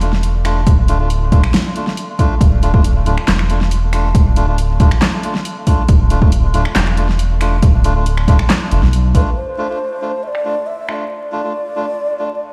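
Round, soft sub bass, a layered deep house kit of finger snaps, handclaps, filtered hi-hat and fat snare, and reedy melodica stabs steeped in dub echo open this brooding, heavy half-time deep dubstep excerpt, joined from 0.7 s by a punchy, overdriven electronic kick sitting up front, before a breathy, close-miked ney takes the melody with vibrato from 9.1 s, over stone room reverb and vinyl crackle.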